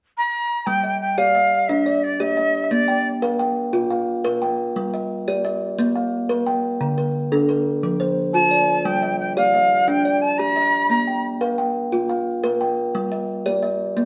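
A kalimba carries this hypnotic, rippling fragment of a longer piece, its woody, hollow-bodied tone and ringing thumbnail plucks spinning out arpeggios from the low to the upper register in an interlocking cycle rooted in southern African mbira tradition. Set in a rolling 12/8 with a straight feel, its bright, up-front figures run to 14.1 seconds. A jazz flute opens the recording at 0.2 seconds with an airy, expressive melody, its crisp, chiffy attack and vibrato giving each phrase a breathy edge. The flute drops away, then returns at 8.3 seconds for a second short statement over the kalimba's steady cycle. The harmony circles between G and B-flat centres with brief turns through D, F and G minor. The players sound as if they are performing together live in one room, wrapped in a damp stone-room reverb that lends the whole cycle an enclosed, echoing glow.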